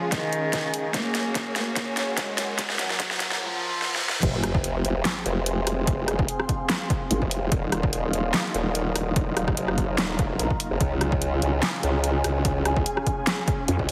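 Heavy wobble dubstep in F phrygian at 146 BPM, with a half-time, lightly swung feel and a menacing, chaotic mood, taken from a longer piece. It opens on a build-up where a dark, woody solo cello carries the melody through vintage 12-bit sampler grit, tape echo and a low-pass filter, sounding distant. Beneath it, a clear studio string section holds sustained chords in the background alongside an ethereal, airy pad of detuned sawtooth and triangle tones, both pumping with sidechain. Very quiet risers, a reverse cymbal and a sub drop lead into the drop at 4.2 seconds, where the cello stops and a saturated, up-front formant-sweep wobble bass takes over, with a nasal, resonant vowel-sweep wobble bass bursting in for brief moments around 7.1 and 13.7 seconds. Overdriven electronic drums drive the track, with a punchy layered kick recorded in a large room and a huge, up-front snare joined by handclaps, hi-hats, rim clicks and crashes, all wrapped in a lush hall reverb and a heavily compressed, radio-like sound.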